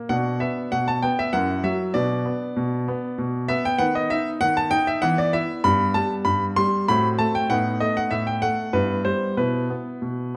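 Elegant and dramatic, this short classical-period sonatina passage in triple metre features a clear baby grand piano playing solo from 0.0 to 10.4 seconds, ranging from F#2 up to C6 with a polished, up-front presence. Its harmony shifts from a minor-key opening toward a new tonal center at 3.8 seconds, moving through dominant-seventh, diminished and added-ninth colors. A moderate recital hall reverb lends the instrument a natural sense of space, and the passage is cut from a longer piece.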